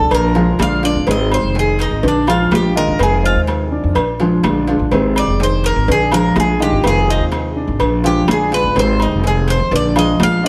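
Relaxed and warm, this short cut of Cuban son and guajira moves at 125 BPM, with an up-front tres soloing throughout in a warm, picked, metallic voice with double strings, over changes that cycle through Bb7, Ab and Fm7. Beneath it, a woody, thumpy pizzicato upright bass sits forward, a mellow dark grand piano rolls out arpeggios, and a fingerpicked nylon-string guitar with audible finger squeak comps quietly in the background. Ringing agogo bells and timbales and tight, high-tuned cowbell and bongos stay low in the mix, with a drum fill at 6.1 seconds, all heard from further back in a room with moderate plate reverb.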